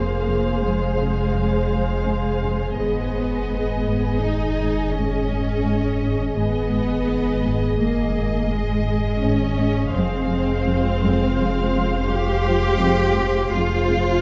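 From the first moment, a deep sine sub bass drone and a dark double bass section anchor this uneasy, mysterious suspense cue in 5/4, as a clear cello section carries the bass line up front, a second cello section plays a smooth riff in the background, a viola section adds expressive portamento accompaniment, a glassy FM pad with chorus and built-in reverb sustains ethereal chords, and a rich violin section holds a focused, vibrato-laden melody over Fm and Abm harmony in a moderate scoring-stage reverb.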